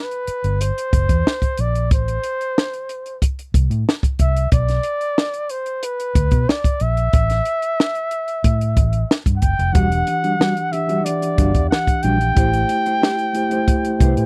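Lush 1970s-style soul in A dorian at 92 BPM, this smooth, silky passage is cut from a longer piece and moves in a straight 4/4 feel. A breathy flugelhorn carries the melody from the very start, intimate and whispered with a soft attack and vibrato, sitting up front as a solo voice. Beneath it, a compact cocktail drum kit with a high-tuned snare, punchy kick and hi-hat joins almost at once, while a vintage fingered electric bass, dark, round and foam-muted, arrives at 0.3 seconds and sits just as close. At 9.7 seconds a mellow tine electric piano, clean and heard through its built-in speakers, fills in the chords, and a dark, clean electric guitar with analog chorus plays a fingered riff in the background. The harmony drifts through Emadd9, Am, Bb and A5 before settling on Em9 and Am7. The recording is dry and close, a 1970s-style studio sound with little reverb.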